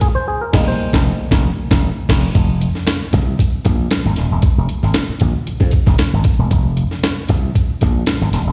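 Cool and funky, this 116 BPM funk passage in straight 4/4 and F minor opens on Fm11, with a stringy, mellow auto-wah clav soloing in stabs with slapback echo while the band hits accents over a gritty, compressed breakbeat sampler-style kit with a thumpy kick and high-tuned snare. A growly, punchy slap bass with an envelope filter sits up front from 0.5 s, and once the clav stops at 2.3 s the groove settles on Fmadd11, with bright, thin-skinned congas carrying slapback echo in the background and a jingly, very quiet tambourine. It sounds like a live gig heard through the venue's PA, wrapped in recital hall reverb.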